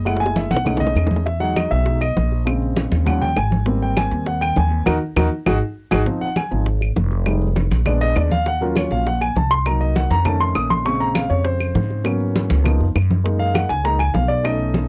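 An intimate grand piano with audible action noise solos from the start over a woody, bright, up-front pizzicato upright bass with transformer saturation, while thick-skinned, damped congas, round low-tuned bongos and woody claves drive this sunny, danceable Afro-Cuban jazz cut at 200 BPM through rich extended chords, with a drum fill at 0.1 seconds and a band accent at 4.9 seconds, all in a dry, gritty recording lifted from a longer piece.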